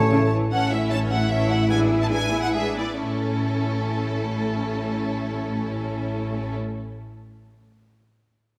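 A lively, graceful classical-period orchestral passage in 3/4, cut from a longer piece, opens with a rich violin section singing the vibrato-laden bowed melody over a clear second violin line, lush violas in accompaniment and an up-front, focused double bass section, joined at 0.1 s by a distant cello section in the background, the rubato phrasing slowing down through the first 3.0 s, bathed in a scoring-stage reverb.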